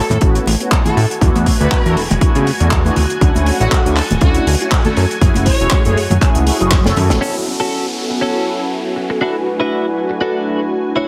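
Heavily compressed, radio-like and lightly reverberant, this feel-good, groovy nu-disco excerpt in A major moves at 120 BPM with a swung 16th feel, as a punchy, up-front electronic kick, a tight funk kit with a high-tuned snare and filtered hats, background congas and a fat, saturated sawtooth bass with sidechain pumping carry a smooth bowed violin section melody with tape echo, lush vintage string-machine chords and mellow, phased synth brass, until a drum fill from 6.7 s and a band accent at 7.1 s hand over to a bright, twangy, direct-recorded clean electric guitar riff, an electronic downlifter and a filter sweep on the string machine from 7.2 s.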